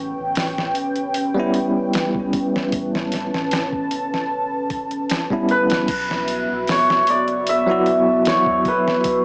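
A dark, detuned analog pad opens this brooding, smoky trip hop excerpt at 76 BPM, its sustained chords carrying vintage sampler grit and chorus over a soft, round dub sub bass sitting deep in the background, with a dusty, compressed sampler-style kit of thumpy kick, fat snare, hi-hat and crash arriving at 0.4 seconds. A bell-like tine electric piano joins at 1.3 seconds with tremolo and tape echo, and the chords move from A9 to Bsus4 near 5.9 seconds. An up-front cimbalom takes the melody from 5.5 seconds with hammered, shimmering tones smeared by cassette tape and dub echo, all heard through moderate spring reverb and the lo-fi character of a cassette home recording played on a small speaker.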